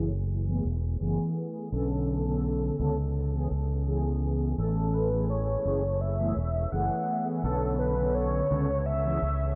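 Hazy and nostalgic, this short vaporwave passage in F# minor drifts at 84 BPM in a straight 4/4, its chords moving from F#m11 through Bm9, C#m7 and Amaj7 under a dark, cassette-tape production with a low-pass filter sweep and a huge ambient reverb. A mellow synth brass with a round, detuned sawtooth tone, lush chorus and analog delay carries the harmony until 9.2 seconds, while a punchy fingered electric bass sits up front underneath. At 4.6 seconds a velvety, smooth synth lead enters with chorus, tape echo and vibrato, singing the melody high above.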